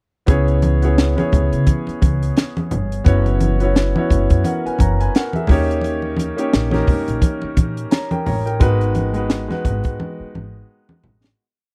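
A dry, close 1970s-style studio sound frames this short, bittersweet and smooth soul piece, where an up-front cocktail kit with a high-tuned snare and punchy kick carries a mid-tempo groove, a woody, growly upright bass plays a warm melodic line with ghost notes and chromatic approach notes, a clear grand piano pushes drop2 chords with short fills, and bright, vintage congas add a syncopated pattern, all leading into a fade-out from 8.6 seconds and a closing drum fill at 10.0 seconds.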